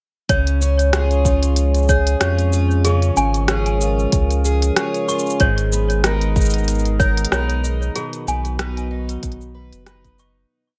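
A swung 94 BPM groove in 4/4 runs from 0.3 seconds, with a deep, soft electronic kick and a clicking found-sound kit of smooth closed hats, cabasa and rim, both tape-warm and re-recorded in a small room, under a round, sine-toned sub bass playing long gliding notes. This pastoral folktronica piece in Db mixolydian sets an up-front, shimmering, octave-doubled twelve-string acoustic guitar fingerpicking sparse arpeggios through digital delay beside a clanky, bell-like toy piano whose slightly out-of-tune, plastic-hammer step sequence carries a second line, also with digital delay. Behind them a warbling, nostalgic pad of detuned square and triangle waves holds chords with chorus, reverb and lo-fi 12-bit grit, moving from Db to Abmadd9 and Cb before the piece fades out from 7.1 seconds.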